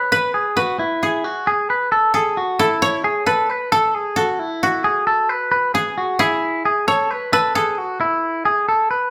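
A live band plays together in a large studio room with a moderate reverb, in a bright, youthful indie pop piece cut from a longer track, at 133 BPM in 4/4 with a straight feel. A clean, compressed electric guitar sits up front with twangy, picked arpeggios between E4 and B4, while a woody koto played with fingerpicks carries the melody from F#4 to C#5 in a dry, up-front tone. The harmony moves from E69 to Eadd11 at 1.9 seconds, and both parts play through the full 9.1 seconds.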